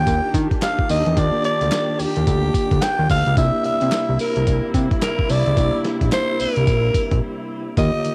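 A lightly reverberant, cassette-tape home recording carries this confident, punchy new jack swing R&B excerpt, where a growling, raspy alto saxophone leads up front over a fat, saturated analog bass, a mellow tine electric piano, veiled con sordino strings, a gritty, compressed sampler-style drum kit with thumpy kick and tambourine, and crisp group handclaps in the background from 0.6 to 6.3 seconds, moving from Ebmaj7 to C7 before a brief break at 7.2 seconds.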